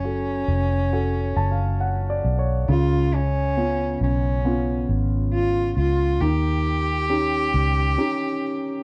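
Heard in a small, dry room and captured close in a 1970s studio style, this short excerpt from a longer pop ballad feels heartbroken and emotional, moving at a slow 68 BPM in straight 4/4 and F# harmonic minor. A single bowed cello carries the melody between C#4 and G4, its rich, reedy, gut-string tone carrying a nasal edge and light vibrato in a period style, sitting up front yet with a distant quality. A concert grand piano accompanies throughout, ranging from C#3 to A5 with deep bass, and adds a fill from 0.9 to 2.7 seconds. Underneath, a vintage muted fingered electric bass gives a dark, round, amped, foam-muted foundation up front, playing until 8.0 seconds, when a break begins. The harmony moves from F#m to C#7 at 2.7 seconds and then to D#7 at 6.2 seconds.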